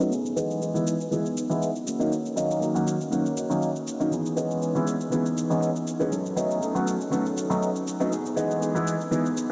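A bright, up-front baby grand piano, a dark, clean electric guitar riff and a layered, electronic-sounding cabasa all start together in this groovy, sensual filtered disco house excerpt at 120 BPM, with a light 16th-note swing. The piano's accompaniment carries phaser, low-pass filtering and vintage 12-bit sampler grit, while the fingered guitar riff is also phased and filtered, and a filter sweep runs through the whole 9.5 seconds over Emaj7, D#m7, C#m9 and B9 before returning to Emaj7. The dreamy mix is soaked in a huge ambient reverb with an 8.4-second tail, and its top end is rolled off, giving a hazy, softened sheen.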